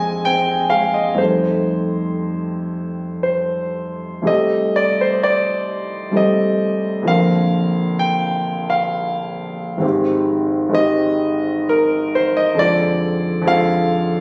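Hazy and nocturnal, this fragment of a longer impressionist classical piece for solo concert grand piano drifts in a rubato 3/4, its clear, natural tone sitting up front with a deep bass and long sustain. Suspended and extended chords open the passage before it shifts at 4.3 seconds into a new section moving through Cm6, Bbadd9, Abmaj7 and Fm6. Moderate reverb surrounds the piano, captured on a phone in the room.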